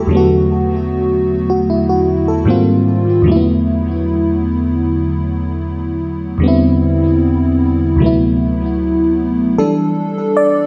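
In a straight, unhurried 4/4, this late-night R&B fragment rests entirely on an FM electric piano layered with a soft pad, its dreamy, warbling, detuned tone given a chorus shimmer and sitting up front. Rich extended chords drift from Bm7/E through G#maj13, Cmaj9/E and D13, carrying a feeling of longing in a lush hall reverb. A brief new section begins at 9.6 seconds, settling onto Em7 before the cut.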